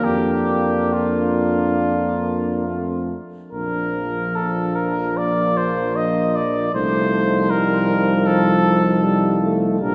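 A clear solo cornet carries the melody up front in this serene, tender, hymn-like brass band excerpt, moving with gentle rubato over a mellow French horn section's tight second line in the background, a trombone section's accompaniment with light vibrato, a warm close-miked solo trombone behind, and a distant, roomy tuba bass, all set in a church reverb that lingers for 2.8 seconds.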